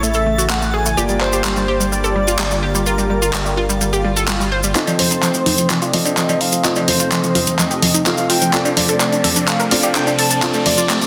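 Progressive house at 127 BPM in a straight 4/4, this uplifting, euphoric passage in F mixolydian is cut from a longer piece. A velvety synth lead carries the melody over a lush, airy unison pad and a detuned analog pluck playing arpeggios, while a dark, boxy grand piano adds mellow stabs with audible action noise and long sustain. A round, deep analog bass anchors the opening until 4.7 s, with grainy maracas throughout and a faint twinkling granular texture shimmering high above in the first section. An up-front pop drum kit with handclaps and hi-hats enters at 0.5 s, and a background swell and riser begin at 4.0 s to push the energy forward. From 4.8 s a build-up takes hold: a drum fill runs as filter sweeps move across the pluck, piano and pad, and cowbell and congas join. The chords shift from A to Gm7, then F7 and Dm7. A moderate hall reverb and a dense, heavily limited modern master give the sound a polished, full sheen.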